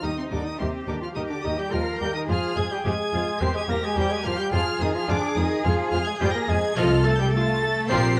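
A spirited, lively classical-period movement for symphony orchestra opens at once with a rich, focused chamber violin section carrying the high melody, while a mellow, hollow flute section, a warm solo clarinet and a very quiet, woody studio violin section weave second lines beneath it. A background viola section supplies accompaniment, the French horns hold sustained chords with light vibrato, and the bass comes from an expressive cello section with portamento and an up-front, even double bass section. Moderate recital hall reverb and a layer of vinyl crackle surround this brief passage, cut from a longer piece and running to 8.2 seconds over chords moving from Eb through Fm.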